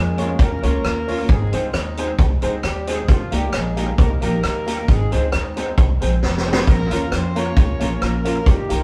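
A live-in-one-room ska recording with vinyl crackle and a moderate stone-room reverb opens on a punchy, vibrato-laden horn section sitting distant in octave doubling, carrying the melody in Bb dorian at 134 BPM over a woody, thumpy pizzicato upright bass on gut strings, while a boomy-kicked, high-tuned-snare street-band drum kit sits up front from 0.2 s. A dark, clean hollow-body archtop guitar and a detuned, jangly honky-tonk upright piano add accompaniment and stabs in the background as the chords move from Bbm through Ab and Eb and back. The mood is mischievous and driving, with a drum fill at 6.2 s leading into the return to Bbm in this short cut from a longer piece.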